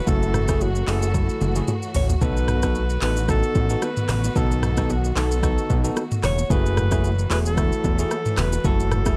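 A breathy alto saxophone carries the melody in an intimate, whispered pop style, its soft attack and light vibrato trailed by tape echo. This mellow, sultry afrobeats excerpt has a gently swung sixteenth-note feel, with an electronic afro-pop drum kit up front: deep kick, metallic hi-hats, handclaps, rim clicks, shaker and toms, and a drum fill from 1.1 to 2.2 seconds. A fat, detuned sawtooth analog bass sits prominently underneath with a fast attack, sustained notes and a filter sweep. A bright, clean, bell-like tine electric piano plays accompaniment, while a lush bowed string section holds smooth, even chords in the background and very quiet congas and bongos ring close and dry. The harmony moves from F#m9 to B7 at 2.2 seconds and back to F#m9 at 6.5 seconds, all within a dark, warm production with light reverb.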